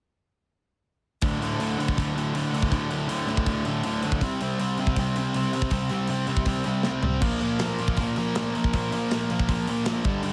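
Lightly reverberant and up front, this urgent, aggressive punk rock passage in D minor is cut from a longer piece and charges along at 160 BPM in a straight 4/4. Two picked electric guitars play the riff together from 1.2 seconds, one thick and overdriven, the other bright and biting with distortion, as the power chords move from D5 to C5 to Bb5. Beneath them, an acoustic metal kit with bright cymbals, a medium-tuned snare and a tight kick drives the music, adding a short fill at 6.9 seconds.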